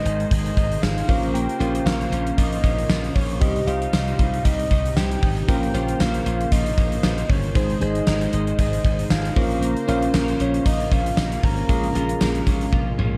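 A dark, small-room production with light reverb frames this moody, dramatic 1980s-style pop excerpt, where a polished gated drum kit with fat snare, tight kick, hi-hat, tambourine and toms drives a glassy slap bass, a lush, dreamy FM electric piano with a soft pad layer, a detuned brassy analog pad and a twangy, compressed twelve-string electric guitar in the background, while a round, octave-layered synth lead with chorus and delay carries the melody until 12.7 seconds, when a drum fill takes over.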